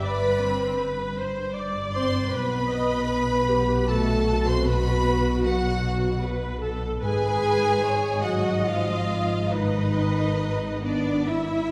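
Moving in a rubato 3/4 at roughly 68-79 BPM, this short cinematic film-score fragment carries a longing, emotional mood as the violin section sings the melody with smooth vibrato over chords of G, B5 and G#m. A second violin line sits in the background beside a mellow solo clarinet and a mellow French horn section holding sustained chords, while the rich, close violas fill in the accompaniment. Woody, dark cellos and focused double basses anchor the bass throughout the 11.7 seconds, all bathed in the wet reverb of a church or concert hall.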